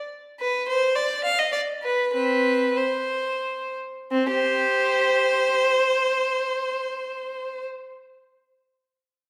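A single violin enters at 0.4 s, playing alone in an introspective, grave classical movement in the manner of a baroque suite for unaccompanied violin. The tempo moves freely between 86 and 113 BPM in 3/4 with a rubato feel, and the opening passage slows down over its first 4.1 seconds before a second section takes over. Bowed by one player and placed up front, the violin has a clear, focused tone with vibrato, moving within a range from C4 to F5 until it stops at 7.6 s. A wet recital hall reverb surrounds it, giving the sound the resonance of a church or concert hall. Tuned to A4 = 439 Hz, this short excerpt is cut from a longer piece.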